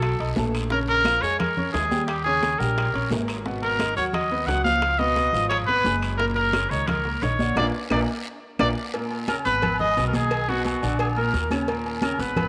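Fiery and danceable, this salsa fragment in Eb minor drives at 175 BPM in a straight 4/4, with a punchy, vintage-toned trumpet up front carrying the melody over a clear, intimate baby grand piano (its action noise audible) and a dark, thumpy pizzicato upright bass on gut strings. Underneath, close and dry congas played with soft hands, raspy guiro and tight bongos with cowbell mix with ringing timbales and agogo bells heard from a distance in a large room, while very quiet, woody claves sit deep in the mix. A drum fill and a band accent land together from 7.6 to 8.9 seconds, hitting a Bb chord before the passage moves into a new section that closes on Eb5 under a moderate plate reverb.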